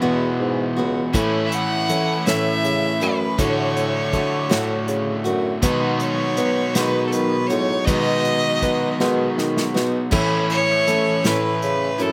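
Folk rock with a heartland rock streak, this hopeful, jangly fragment of a longer piece moves in a straight, unhurried 6/8. A clear, earthy fiddle carries the bowed melody with light vibrato, sitting up front, while a bright, full-bodied dreadnought acoustic guitar is picked underneath, its slapback echo and the odd finger squeak adding sparkle. An overdriven electric guitar, double-tracked and compressed, plays a warm riff close to the listener, and a mellow bassoon with classical-style vibrato supplies the bass line. An acoustic drum kit joins at 1.1 seconds, played with bundle sticks for an airy, polished small-room sound, with a medium-tuned snare, hi-hat, crash cymbal and a punchy kick, and it plays a fill from 9.0 to 10.1 seconds. The harmony drifts from Eadd9 through A, Dmaj7/A and B6 before settling back on A, all captured dry in an open-air setting with little reverb.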